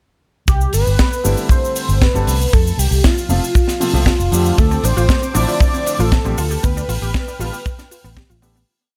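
Groovy and sunny, this short nu-disco piece at 117 BPM in C major rides a dry, up-front four-on-the-floor kick and a tight funk kit with a high-tuned snare, cabasa and open hat from 0.5 seconds, under a punchy, bright envelope-filtered fingered bass riff with tube saturation and a thick, detuned unison lead playing a motif-based melody through analog delay. A worn grand piano adds rootless syncopated chord stabs from 1.2 seconds, then veiled con sordino strings and a round, chorused analog pluck arpeggio join at 4.6 seconds as the track fades out from 5.9 seconds.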